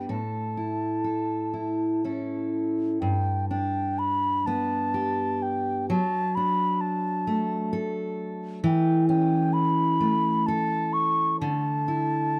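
Wistful and nostalgic, this short excerpt from a longer piece is a Celtic slow air in three, taken with a free, rubato feel. A mellow wooden baroque flute carries the melody, its pure tone touched with vibrato and tongued notes, sitting up front from start to finish. Beneath it, a fingerpicked steel-string dreadnought guitar gives accompaniment, bright and full-bodied with the crispness of fresh strings, also close and present throughout. The harmony moves from A through G and D/F# to A/E before settling on a Dsus2 near 11.4 seconds, with a new section beginning at 3.0 seconds. The sound is dry and intimate, like a close 1970s-style studio recording in a small room.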